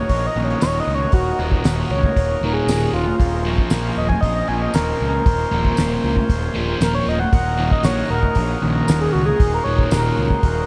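Psychedelic rock at 116 BPM in Eb dorian, trippy and mysterious, this brief excerpt features an up-front, nasal synth lead soloing with chorus, vibrato and delay over a buzzy, overdriven vintage combo organ with spring reverb, a fuzzed picked bass, a double-tracked thick fuzz guitar riff with phaser, a cloth-damped thuddy drum kit with a fat snare and tight kick, and a jingly tambourine tucked in the background from 0.6 s, all moving through Ebm, Bbmadd9/Eb and back to Ebm in a dreamy mix soaked in reverb.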